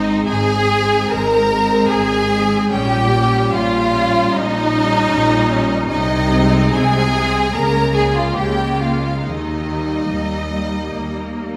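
Serene and tender, this slow romantic movement for string orchestra unfolds in Ab major at a gently rubato 62 to 78 BPM in 4/4, cut from a longer piece. A focused, bowed violin section carries the melody high above, while a second violin section sits up front with a smooth, even line beneath it, its sound closer and more intimate than the rest of the ensemble. Violas add a distant, even accompaniment, and cellos and double basses anchor the bass with a rich, vibrato-laden depth, the basses rounded off with a soft top. The harmony moves from Ab through Eb7/Bb at 2.7 seconds and Bbm7/Db before settling on Eb at 9.2 seconds. All five sections play throughout the 11.6 seconds, bathed in a wet recital hall reverb with a 1.4-second decay.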